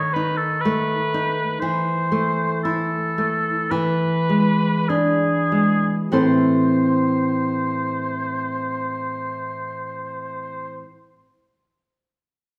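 A lush recital-hall reverb, with a 1.4-second decay, surrounds this short cut from a longer romantic duo for oboe and classical guitar, and both instruments sit up front in the space. The mood is yearning and melancholic, in A minor and 4/4, with a rubato feel that moves between 46 and 63 BPM and slows down over the first 6.1 seconds. The oboe carries the melody in a classical style, its tone warm and vintage with a light vibrato, staying within a narrow span from G#4 to C#5. Beneath it, the nylon-string guitar provides fingerpicked accompaniment across a broader range, from A2 to C5, slightly louder than the oboe and acoustic in character. The harmony moves from B7/D# through Am/E to E7, then settles on A minor at 6.1 seconds as a new section begins and carries both parts through to the end at 10.8 seconds.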